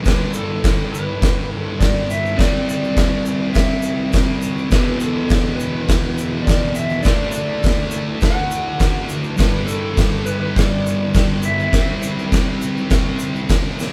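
Raw and menacing, this garage rock excerpt moves at a straight 103 BPM in 4/4, driven by an oversized low-tuned acoustic drum kit that sits up front with a punchy kick, fat snare, dark cymbals and a gritty, saturated, pumping room sound, alongside a double-tracked fuzz guitar riff that is thick, bright and picked. Above them, a clean, twangy lap steel carries the melody with slide and volume swells, while a grainy, band-limited egg shaker ticks along in the background. The band plays live in one small room with moderate reverb, cycling through G, C, E5, D, G5 and C across roughly 13.9 seconds.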